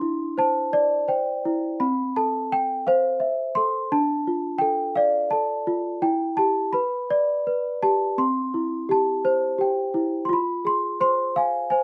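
A tender, innocent children's lullaby in C major, this 11.8-second excerpt from a longer piece features a solo worn celesta in a flexible, rubato 3/4 at about 85 BPM, its bell-like, slightly out-of-tune voice struck with soft felt hammers and heard close and up front in light reverb as it plays within a range of C4 to C6 over gentle chords moving from Cadd9 through Am, Dm and G before touching an unexpected Fm at 10.3 seconds.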